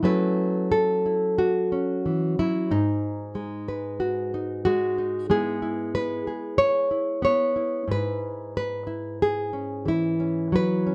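A lone nylon-string guitar, fingerpicked and placed up front, opens this short pastoral folk fragment in E major, moving through F#m7, G#m7 and E6/G# with a dark, classical tone. The playing is rubato around 92 BPM in 4/4, spanning G#2 to C#5 and tuned slightly low to A4 = 438 Hz. Light reverb and a warm, shadowed production give the 10.9-second passage a warm, pastoral feel.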